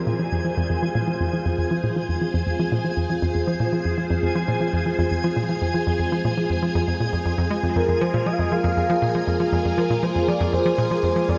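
A steady, straight 4/4 pulse drives this hypnotic, mysterious stretch of ambient, sequencer-driven space music, cut from a longer piece and resting on a single minor chord throughout. A hollow, bouncy square-wave pluck sits up front with a riff in the low register, its fast attack and short decay colored by chorus and tape echo. Alongside it, a string machine holds lush, full-bodied sustained chords, its vintage sawtooth tone thickened by a sub octave and ensemble chorus. High above, a twinkling granular texture adds a sparkling, octave-up shimmer bathed in its own reverb. At 7.8 seconds a breathy, flute-like synth lead enters with a soft melody, carried by vibrato, lush chorus and tape echo. A huge ambient reverb surrounds the whole mix, giving it a vast, floating sense of space.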